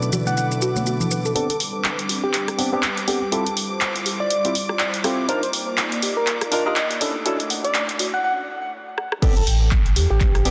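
Deep house at 122 BPM in 4/4 with a swung sixteenth-note feel, moody and deep, cut from a longer piece. A barky, lightly overdriven tine electric piano plays stabs through lush chorus and delay, over an airy, breathy pad of sustained chords and a distant violin section holding a single high note with vibrato, while a soft, round pluck spins dark arpeggios and a gentle FM lead carries the melody. A punchy, dry analog drum machine sits up front with crash, handclaps, hi-hat, rim click and shaker, and congas in soft hands appear only in the first second. A full sine sub bass with an octave layer enters at 1.4 seconds as the chords move through minor eleventh shapes, and filter sweeps on the electric piano, pad and arpeggio drive a build-up that gives way to a break at 8.2 seconds. After a drum fill, the drop lands at 9.2 seconds with a deep, layered, tape-warm electronic kick. Sidechain pumping breathes through the pad, pluck, electric piano and bass, all set in a lush hall reverb under a dense, heavily limited master.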